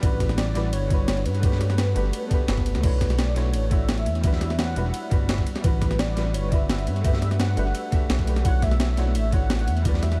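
Melancholic and rolling, this excerpt of liquid drum and bass moves at 171 BPM in a straight 4/4. A velvety, detuned synth lead carries the melody with chorus, vibrato and tape echo, over a soft, felt-muted upright piano whose short, vintage-toned accompaniment also trails tape echo. An ethereal, very quiet pad holds sustained chords beneath them, while a dark, up-front synth bass with a ring-modulated edge anchors the low end. The drums pair a gritty, compressed breakbeat kit of snare, hi-hat, ride and crash, also touched by tape echo, with a thumpy electronic kick that drops out at 9.9 s, both re-recorded in a small room. A faint electronic swell appears in the background at 2.3 s, the harmony drifts through chords such as Gmaj9, Bm11 and Em9, and a digital, echo-heavy ambience wraps the whole mix.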